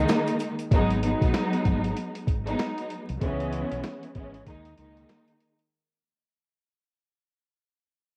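A swung four-four boom-bap groove sets the pace, carried by a compressed, pitched-down sampler-style drum kit with a thumpy kick, a medium-tuned snare and hi-hat, all given a gritty, tape-worn tint. A very quiet, grainy egg shaker sits close and dry for a brief moment at the start, while a deep, round fingered electric bass holds the low end in a dark, direct tone until 5.0 seconds. Above them, a lush bowed string section with expressive vibrato plays the accompaniment, filtered and softened by a cassette-tape character. The harmony moves from a suspended chord through G#m7 and C#m7 before returning to the suspended sound, giving the hip-hop fragment a dark, reflective mood. Studio reverb and the crackle of a home cassette recording colour the whole mix, and a fade-out runs from 0.7 to 5.7 seconds as this short cut from a longer piece slips away.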